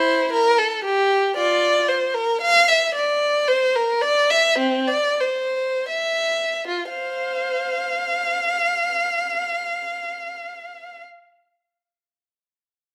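Radiant and flowing, this short classical excerpt of a baroque-style suite movement in 3/4 features a lone bowed violin with a warm, expressive voice, soft attack, vibrato and portamento, played up front with rubato at 74-118 BPM, slowing from 2.2 to 6.7 seconds before a new section begins, all set in a moderate stone-room reverb.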